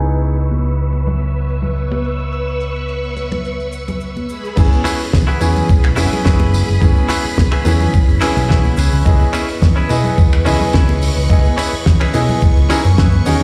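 Cosmic and groovy, this nu-disco excerpt from a longer piece moves in a lightly swung 4/4, opening with a clear, smooth concert grand piano accompaniment through analog delay over a lush sawtooth string machine whose sustained, soft-attack chords carry phaser, ensemble chorus and sidechain pumping. Both piano and strings sit under a filter sweep through the opening 4.6 seconds, while a dark, round fingered electric bass pumps up front and a damped 70s kit adds a fat, dry snare, hi-hat, finger snaps, tambourine and crash, its cymbals and room softened by low-pass filtering. Bright, close congas and tube shaker tick away in the background. At 4.6 seconds the drop arrives with a gritty, thumpy electronic kick, compressed and tape-colored, pushed to the front, and moments later a twangy, picked clean guitar riff joins with subtle chorus and analog delay, closing with a fill at 12.4 seconds. 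The harmony drifts from C#m7 through E/G# to a suspended F#9sus4 before returning to C#m7, all heard as if played on a big sound system in a bare stone room.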